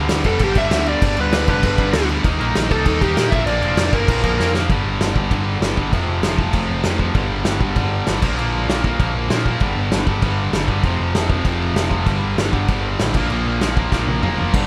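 Punk rock at a fast 195 BPM in straight 4/4, rowdy and upbeat, cut from a longer piece and lasting just under 15 seconds. Three rhythm guitars drive the riff throughout: a bright, picked distorted electric guitar, a tight distorted guitar sitting in the background, and a very quiet double-tracked fuzz guitar adding a warm, fuzzy layer. Underneath, an overdriven picked electric bass with a round, punchy tone holds down the low end, while a loose indie drum kit with a punchy kick, medium-tuned snare, dark cymbals and a roomy, rolled-off character pounds along with crash and toms. A dark, bluesy overdriven lead guitar plays a short melody only at the start, from 0.3 to 4.5 seconds, before a drum fill carries the music into a second section at 4.7 seconds that cycles through G, F and Bb chords. The sound is dry, with little reverb, and another drum fill closes the clip near 14.5 seconds.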